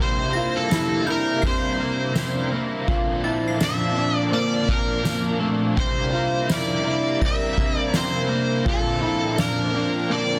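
A bright, overdriven slide guitar sings the melody up front with tape echo over a blissful, dreamy dream pop groove at 83 BPM, alongside a picked semi-hollow guitar with tremolo, a swirling phased analog pad, dark chorused electric guitar arpeggios, a faint inharmonic synth chime from 0.3 s, and a soft-mallet drum kit with a boomy kick and fat snare entering at 0.7 s, all moving between C7 and Bbmaj7 in a dense, heavily limited mix.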